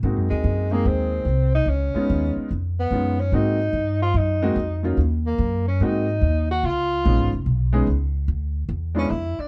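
Lightly reverberant and close, this swinging, playful jazz passage, cut from a longer piece, moves at 146 BPM in Ab mixolydian: a woody, thumpy pizzicato upright bass on gut strings and an intimate grand piano with audible action noise accompany over Ab7, Db7 and Ebm changes, while a mellow tenor saxophone with vibrato and plate reverb carries the solo melody from 0.3 seconds.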